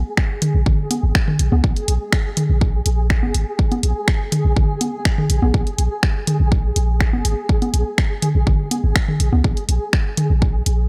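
A dry, gritty hardware sound with a digital ambience frames this short cut from a longer minimal techno piece, moving at 123 BPM in a straight 4/4 with a cool, hypnotic mood. A deep, punchy sine sub bass with a pitch-drop attack sits up front from the very start, sustaining between F1 and Db2 and pumping under sidechain compression. An electronic kick drum, layered and tape-warm and re-recorded in a large room, enters at 0.2 seconds alongside a house kit of finger snaps and hi-hat carrying the same roomy, up-front character. Analog electronic toms and congas join at 0.4 seconds through an analog delay. High above, a mellow, flickering granular texture built from a detuned triangle tone holds on Ab4 with a slow attack, long release and its own reverb, pumping quietly behind the groove while the harmony rests on a single Bb7(no3) chord.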